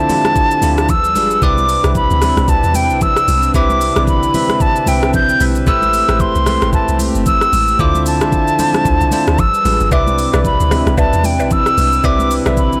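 Over a swung sixteenth-note groove of knocking kick, smooth hi-hat, rim click and shaker from an electronic R&B kit with soft clipping on the snare, this late-night, deep amapiano fragment layers round, dark log drum bass, bright thin-skinned congas in the background, bell-like tine electric piano chords, a hollow, chorused pad pumping under sidechain, and an airy, up-front concert flute with vibrato and delay carrying the melody through jazzy ninth chords, before a woody, warbling synth pluck adds chorused, delayed stabs from 9.9 seconds, all caught in a blown-out, overdriven digital ambience.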